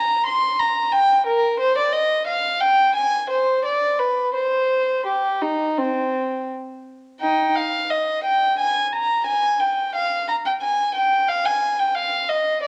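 In a rubato 4/4 pulse hovering around 82-91 BPM, this solemn, introspective excerpt of a baroque-style suite movement in C minor presents a single bowed violin with a dark, nasal gut-string tone in period style, ranging from C4 to C6 across two statements of the same opening section, set in a moderate recital-hall reverb and tinged by the warbling pitch drift of worn cassette tape.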